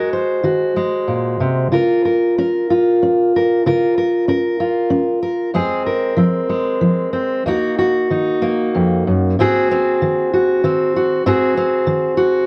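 Moving in a loose, rubato 3/4 at around 95 BPM, this short folk piece, cut from a longer work, features a single fingerpicked steel-string acoustic guitar with a haunting, melancholic mood. The dreadnought sits up front with a dark, full-bodied tone, ranging from a low Eb2 up to C5 across its 12.5 seconds. The harmony drifts from Ebm through Bbm/Db and Fm before returning to Ebm, then turns toward Ab7 at 9.4 seconds as a new passage begins. A moderate studio reverb lends the guitar some space, while the sound carries the worn character of old cassette tape, its warbling pitch drift adding a wistful, unsteady quality. The result feels intimate and faded, like a half-remembered recording.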